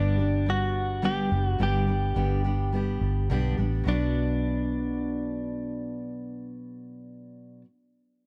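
A dark, round, foam-muted electric bass sits up front and punchy in this short, reflective acoustic pop passage in B minor, moving at 106 BPM in a straight 4/4. A fingerpicked steel-string acoustic guitar with a full auditorium body supplies the accompaniment, while a clean, compressed electric guitar, recorded direct with a warm tone, carries a picked melody between D4 and G4. The harmony shifts from G to Bm at 3.9 seconds, and the dry, close sound of a 1970s-style studio gives the wistful mood an intimate, unadorned feel.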